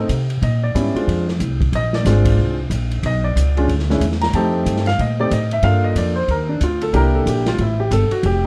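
An intimate concert grand piano with audible action noise and a woody, thumpy upright bass open this playful, sophisticated jazz piano trio excerpt at 184 BPM in a swung 4/4, the piano soloing over Bb9, Bm, F9, Gm7 and C9 while a smooth acoustic drum kit of hi-hat, kick, ride and snare, with dark cymbals, a boomy kick and a rolled-off top, sits further back in a small room under light reverb and a warm production.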